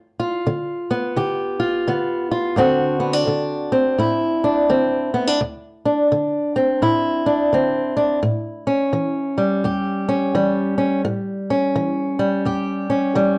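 Blues at an easygoing 85 BPM in 4/4 with a swung eighth-note feel, this laid-back yet rollicking excerpt features a lone fingerpicked old ladder-braced acoustic guitar, up front and boxy, with the woody character of old strings. It moves through G7, D7 and A7 across its 13.4 seconds, with light reverb and a dark production.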